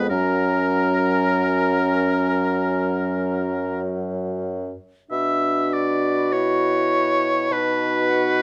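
A clear oboe sits up front with a light vibrato, carrying a second line just beneath the melody in this elegiac, melancholic slow movement for wind quintet, cut from a longer piece. Above it, the concert flute sings the melody with a pure, straight, tongued tone, though it sits lower in level than the oboe. A dark French horn with a smooth top and a mellow clarinet fill in the accompaniment, while the bassoon, also up front and touched with light vibrato, anchors the bass. All five play together in a rubato classical style throughout the roughly 8.4 seconds, moving into a new section at 5.1 seconds, with a further harmonic change at 7.5 seconds. A moderate large-studio reverb and a dusky, warm production give the ensemble a sombre, intimate glow.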